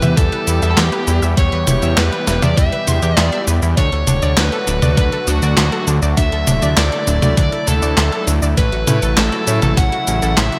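Synthwave clip, moody and driving in a straight 4/4, where a dark, fuzz-distorted lead guitar with digital delay carries the melody over a lush chorused unison pad pumping in the background and a warbling, delayed unison pluck playing arpeggios, also set back in the mix, while a thumpy electronic kick drives beneath a fat, saturated analog bass with an evolving filter sweep that sits up front beside a tape-warm 12-bit drum machine of medium-tuned snare, handclaps, hi-hat, cabasa and toms drenched in gated reverb, all set in a bright 1980s-style digital production with a lush hall reverb as the chords move from Em to D to A6.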